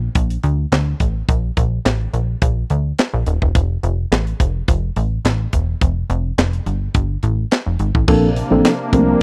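A plucky, punchy analog bass with a fast-attack filter snap opens this feel-good early-eighties boogie funk excerpt at 106 BPM in Bb major, joined at 0.1 seconds by a tight, dry funk kit with a high-tuned snare, handclaps, hi-hat and crash, moving from Bbmaj7 to F before a mellow tine electric piano, a smooth detuned pad with chorus and tremolo, and a dark, very quiet fingered guitar riff arrive at 8.1 seconds on a Bbmaj9 chord.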